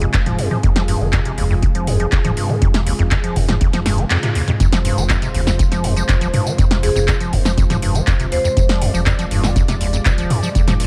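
Gritty and trippy, this acid house cut is built on a squelchy, resonant square-wave acid riff with saturated filter sweeps and digital delay, pumping against a round, dark sub bass and a detuned, chorused pad of sustained chords on F minor. A deep analog kick drives the straight 4/4 groove beneath a drum machine of handclaps, tambourine, toms, a punchy snare and metallic hats, with a short room on the snare, claps and hats, and a band accent at 4.1 seconds leads into the drop at 4.6 seconds. From 6.8 to 8.5 seconds a bright, ringing vibraphone struck with hard mallets adds a brief delayed melody with slow motor vibrato, all set in light reverb.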